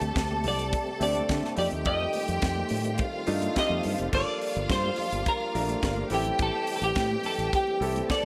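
A danceable, glamorous disco cut taken from a longer piece, moving in a straight 4/4 groove. A tight funk drum kit with bright cymbals, a high-tuned snare and a tight kick drives the track from the start, while a round, punchy fingered electric bass plays alongside it and drops out at 8.0 seconds. A smooth, vintage grand piano plays accompaniment, a lush bowed string section with clear vibrato carries a second line above it, and a fat, lightly overdriven tonewheel organ with chorus vibrato and a fast rotary speaker holds sustained chords in the background. Very quiet, high-tuned congas with a compressed, saturated edge join at 0.2 seconds, and at 0.5 seconds a clean, picked semi-hollow electric guitar with analog chorus takes the melody as the most prominent part. The harmony moves from D7sus4 to F13 before shifting to Gm7 at 4.1 seconds and Am7 at 6.1 seconds, all set in a moderate large studio reverb with a touch of small room ambience.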